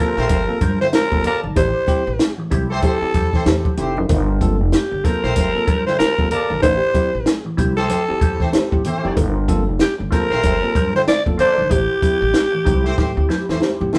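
Funk excerpt at 95 BPM in G dorian, driving and funky with a swung sixteenth feel, as a raspy, gritty alto saxophone carries the melody up front over a band playing live in one room, moving between Gm11 and Am7. A mellow, dark electric guitar with wah fills out the accompaniment, a bright, bell-like tine electric piano plays stabs, and a punchy, distant horn section with octave doubling adds a second line. A woody pizzicato upright bass and a compact cocktail drum kit with a high-tuned snare anchor the groove alongside ringing congas in the background, and the drums close with a fill from 13.0 s.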